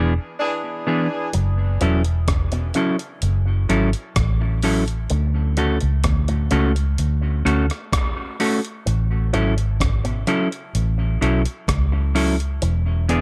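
A gritty, compressed breakbeat kit of hi-hat, rim click and thumpy kick settles into a slow, straight 64 BPM dub reggae groove in F# minor at 1.3 seconds, after an opening band accent over E7 where a distant, roomy horn section with light vibrato briefly sounds a second line from 0.4 seconds. Up front, a dark, round, foam-muted fingered bass and a clean hollow-body guitar bathed in tape echo carry the piece through F#m7, Dmaj7 and A6. In the background, a bright, twangy guitar through an envelope filter picks echoing arpeggios, giving this hypnotic, spacious fragment of a longer piece its light reverb-tinged sense of depth.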